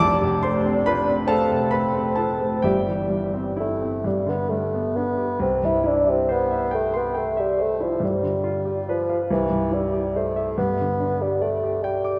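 From the first moment a dark, lightly vibrato bassoon sings a lyrical, tender melody over a clear concert grand piano with deep bass and short sustain, the two moving with unhurried rubato in a lilting 6/8 through a romantic classical fragment, heard from further back in a concert hall whose reverb lends a roomy glow before the music turns toward a new section at 5.4 seconds.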